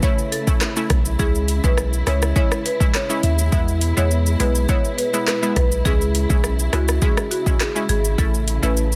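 A dense, heavily limited modern mix in a digital ambience opens this tough, sultry dancehall excerpt in C# minor at 103 BPM, where a woody, hard-mallet marimba carries the melody with delay over a detuned, chorused analog pluck and dark, lush bowed strings, both pumping with sidechain. Up front, an electronic afro-pop kit drives the groove with a deep kick, metallic hats, handclaps, rim click and shaker, and a punchy sine sub bass with a pitch-drop attack joins at 0.9 s. The harmony moves through A, C#m, E, C#m and back to A.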